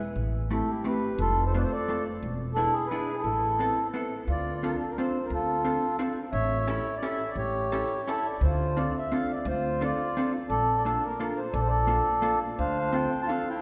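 Nostalgic and whirling, this excerpt of a musette waltz turns briskly in 3/4 at 173 BPM with a light swing, opening in A minor before shifting to D minor at 4.3 s. A woody, growly pizzicato upright bass sets the pulse first, and a reedy, airy accordion soon carries the melody up front alongside a dark, clean, compressed hollow-body electric guitar. A distant clarinet plays a soft second line in the background until 3.9 s and returns at 12.6 s, all set in a lush church reverb.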